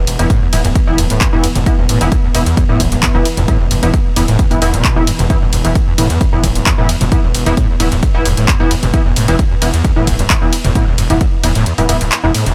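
A heavy, tape-warm kick drives this relentless, hypnotic slice of peak-time techno over a gritty, saturated synth bass with a resonant filter sweep, a squelchy distorted acid riff in the background, thick detuned rave stabs touched with cassette-tape colour and delay, a deep, moody ambient pad drone, and a layered drum kit of handclaps, ride, toms and warm hats, with the pumping sidechain on the bass, acid riff, stabs and pad before the kick drops out near the end.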